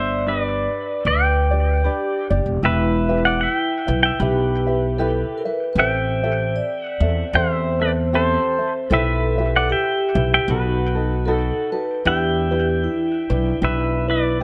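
Sunny and dreamy, this short Hawaiian fragment sways with a gentle swing, shifting from a G chord into E minor at 2.6 seconds. A bright, twangy electric pedal steel guitar carries the melody up front, played with fingerpicks and slide, with volume swells and tape echo. A ringing, metallic vibraphone with slow motor vibrato adds a second line, a light thumb-plucked tenor ukulele provides accompaniment, and a woody, growly upright bass sits prominently underneath, all in a small room with light reverb.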